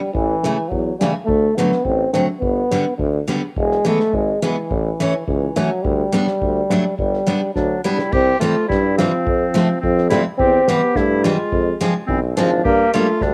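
Festive and jolly, this alpine folk dance-band piece, cut from a longer work, moves at 106 BPM in a straight 2/4, starting in G major and shifting to C major at 8.1 s, with a drum fill easing the change. A warm, distant euphonium carries the melody up front with a cassette-tape tinge, over a clear, vintage-sounding tuba bass, a picked dreadnought steel-string guitar that is bright and full-bodied with fresh strings and finger squeak, and a dark, smooth small-room drum kit played with bundle sticks, its punchy kick and medium-tuned snare also touched by cassette tape. A bright clarinet joins with a second line at 7.5 s, and the whole home cassette recording sits in a light reverb.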